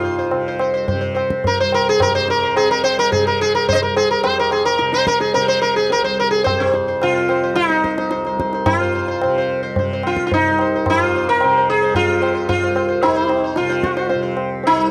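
The rhythm moves in a straight four-beat metre and gradually quickens across the whole clip, giving this Hindustani classical passage a quiet sense of urgency beneath its solemn, longing mood. The sitar carries the melody up front, its plectrum-plucked tone round and buzzing, with sympathetic strings adding a shimmering halo around each phrase. Beneath it, the tanpura sustains a low, softly plucked drone, warm and buzzing, sitting well back in the balance. The tabla joins at 0.3 seconds, high-tuned with a short ring, captured close and dry. The sound recalls an intimate 1970s studio session, with only a light touch of reverb. The fragment is cut from a longer performance and stays within a single section throughout its roughly 15 seconds.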